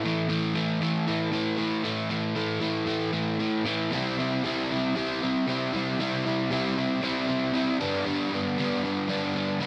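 A crunchy, overdriven electric guitar opens this short rock excerpt, picked and double-tracked, with a bright edge that sits up front in the mix. The mood is brooding yet cathartic, moving at a straight 116 BPM in 4/4, with the instrument tuned to A4 = 437 Hz. The guitar carries the piece as a solo from start to finish, spanning G2 to E4 over a harmony that begins on A5, shifts to C at 3.9 seconds, and arrives on G at 7.8 seconds. That change at 3.9 seconds also marks the move into a second section of the brief passage. A moderate studio reverb frames the sound, and the performance has the immediacy of a band playing live in one room.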